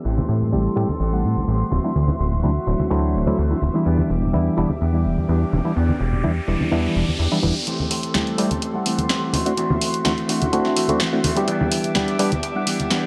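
A straight 4/4 groove at 126 BPM drives this nostalgic, funky filtered disco house excerpt in E minor, cycling through Am7, D9 and Em7. A plucky analog bass with a fast attack, sawtooth and square-wave tone and tube saturation anchors the low end, while tambourine and congas played with hard hands ring out in a small-room acoustic. A barky, clean electric piano colored by a phaser supplies bright accompaniment, an electric guitar with an envelope filter picks a twangy, scooped riff in the background, and a studio string section holds bowed chords with a gut-string, period-style tone. Filter sweeps shape the music under light reverb, and an electronic riser from 5.5 s leads into a build-up at 7.7 s, where a punchy analog drum machine enters up front with hi-hat and snare.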